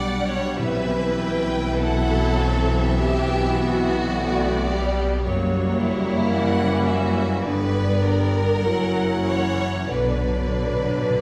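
A second violin section sings up front with a warm, expressive tone, vibrato and portamento, carrying an inner line beneath the higher first violins in this slow, elegiac orchestral excerpt, taken from a longer romantic movement. The first violins hold the melody in a lush, rich voice with vibrato, while distant violas with a smooth, even sound fill in the accompaniment. Mellow French horns sustain chords in the background, and the low end is anchored by clear cellos and focused double basses, bowed with vibrato. The tempo drifts between 46 and 56 BPM in 4/4 with a yearning rubato feel, as the harmony moves from G/B through F#7b9 to settle on B minor. Very quiet timpani, played with medium mallets on calf heads, enter at 0.6 seconds and return for a fill from 9.9 seconds. The ensemble is heard from further back in a wet scoring-stage reverb, giving the strings and horns a spacious, enveloping glow.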